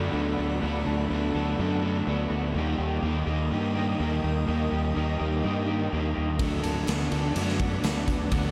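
A dreamy, blissful shoegaze and dream pop passage, cut from a longer piece, moving in a straight 4/4 over a D6 chord that shifts to Eb at 2.6 seconds before returning to D6. An ethereal, airy pad holds sustained chords with a slow attack, long release, ensemble chorus and built-in reverb, while a dark, lo-fi guitar through a small old amp picks very quiet arpeggios beneath it. Two overdriven semi-hollow guitars carry the riff with a hollow-body tone, one coated in lush chorus and the other trailed by reverse reverb, and a bright, up-front fingered bass sits low and direct underneath. At 6.4 seconds a raw garage drum kit arrives with punchy kick, snare and ride, sounding saturated and gritty in a pumping stone room with a rolled-off top, joined at 6.6 seconds by a jingly, close and dry tambourine. The production is dark and warm, with light studio reverb.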